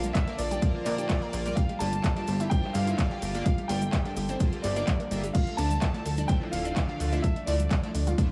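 Progressive house at 127 BPM, driving and bittersweet, where a dark, mellow baby grand carries the melody through digital delay and sidechain pumping over Bb, Gm7 and Dmadd9 chords, shadowed by a very quiet, sul tasto chamber violin section and reedy gut-string sustained chords, while a punchy, funky analog bass and an up-front electronic kick anchor a deep house kit with dark hats, handclaps and crash, grainy cabasa, tape-warm congas and bongos, a round, detuned analog pluck arpeggio with chorus in the background, and glossy, retro polysynth stabs entering at 0.3 seconds, all in a dry small room.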